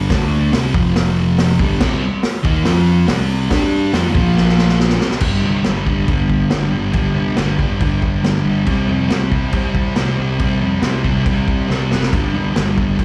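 Raw and rowdy, this garage rock fragment, heard live through a club PA with light reverb, drives a double-tracked, up-front fuzz guitar riff with slapback echo over a round, overdriven picked bass and a vintage kit with a punchy kick and dark cymbals, with drum fills at 4.4 and 11.7 seconds.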